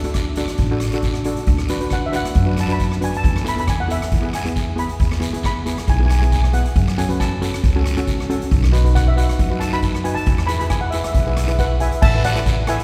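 A mellow lead steel pan played with soft rubber sticks carries the melody over dark cello pans struck with hard rubber sticks, woody gut-string pizzicato upright bass and an up-front street-band drum kit with a boomy kick, dark cymbals, hi-hat and rim click. A raspy, close guiro joins at 0.2 s, and the festive, bouncy swung calypso moves through chords from D to a closing Asus2 inside the wet wash of a church reverb.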